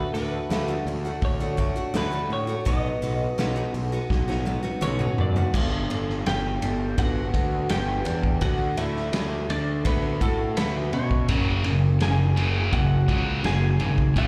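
A steady, straight 84 BPM pulse in 4/4 drives this bittersweet, cathartic quiet-loud alternative rock excerpt, heard live through a club PA, where a twangy twelve-string electric guitar carries the melody with lush chorus and slapback echo over boxy parlour acoustic arpeggios, a growly fuzz bass and a punchy, up-front garage drum kit. As the chords move from D and B to G and back to D, the kit plays a fill leading into the G, until the acoustic stops at 11.3 seconds and a scooped, high-gain distorted guitar riff crashes in on an F#5.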